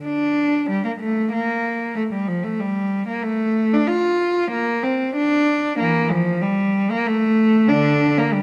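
A single bowed cello, rich and up front with vibrato, soft attacks and expressive portamento, plays alone from 0.1 to 8.4 seconds in this classical, baroque-style suite movement in D minor, moving between D3 and F4. The mood is introspective and solemn, with a rubato feel around 94 BPM in 3/4. A wet scoring stage reverb with a 1.8-second decay surrounds the instrument in this short passage cut from a longer piece.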